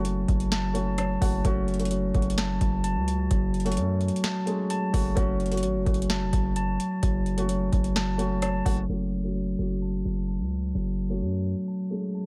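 Hip hop in a dark, hard-hitting half-time trap style, this excerpt sits on a booming analog drum machine with a deep kick, crisp snare, metallic hats and rim clicks, all overdriven and roughened by gritty 12-bit sampler character, alongside a punchy, heavy 808-style bass. A mellow tine electric piano plays arpeggios through tape echo over a soft, muted upright piano with thick felt. The drums drop out at 8.8 seconds as a filter sweep begins at 8.9 seconds, and the bass stops at 11.5 seconds, leaving the two pianos in a dry, filtered mix.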